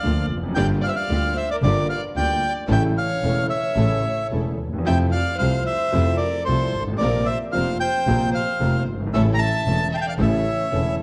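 A reedy, dark bandoneon sits up front with the melody in this passionate, dramatic tango, which moves at 113 BPM in 4/4 with a rubato feel and is cut from a longer piece. A rich, boxy violin with vibrato and portamento adds an expressive second line, while a clear concert grand piano with deep bass gives smooth, vintage-toned accompaniment over a soft-attacked, pure double bass bowed sul tasto, and a very quiet, lush string section plays close, even stabs. The harmony passes from Bb/D through Gm7, A, Fmaj7 and Bbsus2 back to A, set in a wet recital hall reverb with a warm production.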